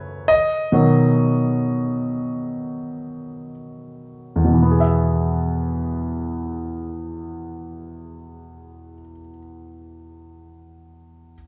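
In free time, this hopeful, heartfelt pop excerpt in E major is carried by a concert grand piano ranging from E2 to E5. The piano plays solo and slows down through its opening 4.6 seconds as a B chord gives way to E. The piano sounds clear and polished, up front, with deep bass and short sustain, set in a moderate large studio reverb that gives it a live, roomy presence through to 11.4 seconds.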